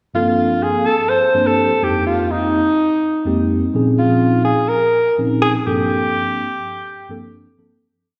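Heard live through a venue's PA, this short jazz piece sits in a lush recital-hall reverb and has an intense, funky mood. Up front, a breathy alto saxophone with a vintage subtone, scooped notes, slapback echo and tape echo plays a free solo melody over a mellow tine electric piano, whose clean rootless chords push the rhythm through phaser and slapback echo and move from Gm11 through Fm11 and Bbm11 back to Gm11. The piece fades out from 5.9 seconds, with the saxophone stopping at 7.3 seconds and the piano at 7.8.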